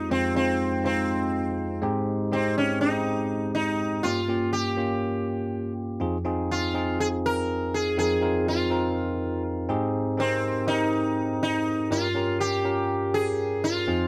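The recording sounds dry and close, like a 1970s studio session, with a light touch of reverb around the players. This short pop cut from a longer piece moves at 122 BPM in a straight 4/4 in F minor, with a moody, nostalgic air. A bright, plectrum-plucked sitar carries the melody between C4 and Bb4, its buzzing tone and shimmering sympathetic strings set up front and trailed by a slapback echo. Alongside it, a bell-like tine electric piano plays the accompaniment from F2 to C5, clean and direct with a subtle chorus. Both parts play together from 0.0 to 14.1 seconds, as the harmony cycles through Fm7, Abmaj7 and Gm7b5 before returning to Fm7 at 6.0 seconds and repeating the pattern.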